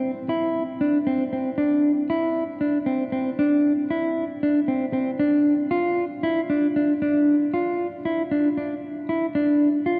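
A dark, clean electric guitar, fingered and up front, carries this short progressive instrumental fragment entirely alone, its mellow voice staying in a narrow middle range. The mood is driving and intricate, moving in an odd 7/8 metre with a straight feel, and the opening passage gives way to a new section at 8.8 seconds. A long cathedral-like reverb bathes the guitar in the resonance of a church or concert hall, with a softened, dim top end.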